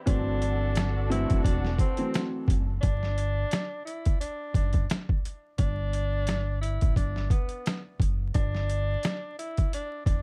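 Boom-bap hip-hop at 87 BPM with a soulful, warm mood, where a gritty, overdriven sampler-style kit with a thumpy kick and a round, deep dub fingered electric bass sit up front beneath a bright, vibrato-laden tenor saxophone melody with scooped notes, while lush bowed string stabs and a worn, slightly detuned upright piano with audible action noise play only until about 2.8 and 2.6 seconds respectively, all under a dark production with light reverb and vinyl crackle in this cut from a longer piece.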